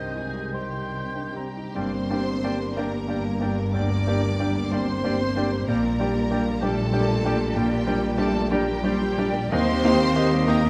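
Tragic and passionate, this romantic movement for piano and orchestra in G minor unfolds in a slow, rubato 12/8, with dotted-quarter pulses drifting between 46 and 65 BPM. Up front, a clear, natural baby grand piano carries the melody with a short sustain, joined high above by an intense, rich violin section singing with vibrato and a smooth top. Second lines come from a lush, close second violin section, an airy flute, a classical-style clarinet and an oboe that joins at 1.8 s, as the music moves from its opening into a second section. A very quiet, soft-attack viola section and a warm, distant bassoon fill in the accompaniment, while a dark French horn section holds sustained chords in the background and bowed cellos and double basses anchor the bass. The harmony passes from C minor to G minor, then to G minor over B-flat at 5.7 s and E-flat at 9.5 s, all set in a recital hall's wet reverb in this short passage cut from a longer piece.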